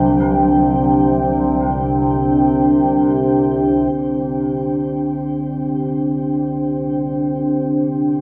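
Dark and unsettling, this free-time dark ambient drone is a short cut from a longer piece, tuned to A4 = 439 Hz and set on a Csus2 chord inside a wet cathedral reverb with a 6.6-second decay. An up-front, deep, detuned analog pad with a sub octave and chorus holds sustained chords from D4 to G5, while a resonant overtone-sweeping drone between C2 and C3 blends sawtooth, sine and triangle with ring modulation, its moving overtones carried by chorus and built-in reverb. In the background, a bright bronze gamelan-type metallophone played with a horn mallet sounds arpeggios on F#3 with shimmering beats, diffuse delay and shimmer reverb until 4.4 seconds, as a barely audible quartz singing bowl rings with slow, meditative beating until 4.0 seconds.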